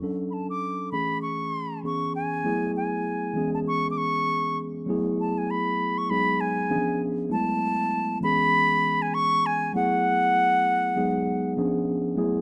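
A gently swung sixteenth-note groove at 99 BPM in 4/4 carries this smooth, bittersweet soul fragment in F# minor, cut from a longer piece and tuned slightly below standard pitch. A mellow tine electric piano, warm, clean and up front, lays down chords such as F#m11, C#m7 and C#7b9 from the opening through 12.4 seconds. A concert flute with a pure, straight, tongued tone sits just as close in the high register from 0.3 to 11.5 seconds, all heard through light reverb and small-room ambience in a rough home-demo mix.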